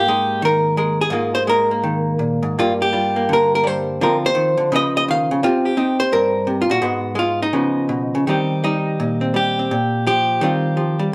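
Solo jazz, relaxed and playful, taken from a longer performance and moving with a loose swing feel that stretches into rubato. A single hollow-body electric guitar carries everything, played clean and picked, its dark, compressed tone sitting up front from the opening moment through to 11.1 seconds. The guitar ranges from G2 up to F5, drifting through rich extended harmony such as minor sevenths and ninth chords before settling into a brighter sixth-based resolution around 8.3 seconds. That closing passage lands on an Eb69 chord, giving the brief phrase a gently finished feel. A moderate reverb from a large studio room surrounds the instrument, and the performance has the natural, unguarded quality of musicians playing live together in one space.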